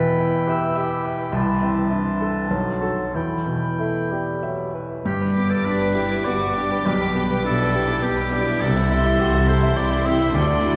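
Swaying in 3/4 with a rubato pulse between 93 and 108 BPM, this brief excerpt from a longer romantic movement for piano and orchestra feels tragic and brooding, opening in E minor before turning toward G major at 5.0 s. A bright, brilliant baby grand piano carries the melody up front throughout, its long sustain ringing from the low bass register into the treble. In the first half, a mellow, distant clarinet, an airy concert flute with straight tone and soft attack, and a solo oboe weave second lines above a bassoon with light vibrato, and the oboe continues to the end. From 5.0 s the strings take over the support: an expressive cello section and a close double bass section anchor the bass, a smooth viola section fills in behind, a focused violin section adds a second line, and a lush, intense upper violin section joins the melody high above, all bowed with vibrato, while a triangle sounds faintly and briefly. 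The recording is heard from further back in a reverberant concert hall, giving the sound a spacious, resonant glow.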